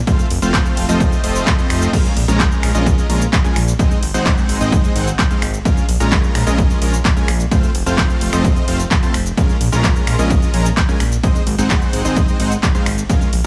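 Opening straight into a powerful, emotional festival progressive house groove at 129 BPM in Bb minor, a huge, detuned supersaw riff pumps with sidechain and tape echo over an overdriven, punchy kick up front, a crisp big-room kit of hi-hats, handclaps, finger snaps, cabasa, ride and crash, and a fat, saturated analog bass that enters at 0.3 seconds, all cycling through F, Bbm7 and Ab in a dry, small room for this short cut from a longer piece.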